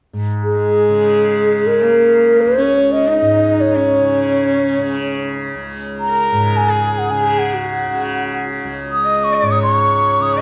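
A mellow bamboo bansuri sits up front, carrying the melody in a pure tone with soft attacks and gentle vibrato from 0.4 seconds. This is a meditative, serene passage of Indian classical music in free time, set in raga Durga on Db and cut from a longer performance. Beneath it, a tanpura sounds from 0.1 seconds, its softly plucked, buzzing drone bright and shimmering in the low register. At 0.6 seconds a single bowed sarangi enters as a second line, smooth and even with light vibrato and gliding portamento, its sympathetic strings adding resonance to its warm voice. Close, detailed microphones capture the trio in a moderate recital-hall reverb that lends a calm sense of space.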